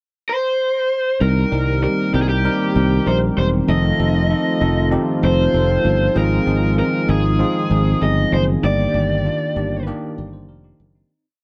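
An overdriven, lo-fi lead guitar carries hook phrases up front through this short, nostalgic and moody pop piece, over a growly fretless bass driving eighth notes with slides, chromatic approach notes and a lush chorus, a bell-like tine electric piano playing eighth-note chords with short fills, and a detuned sawtooth pad with a filter swell in the background, all captured in a dry, close 1970s-style studio sound that fades out from 8.6 to 11.1 seconds.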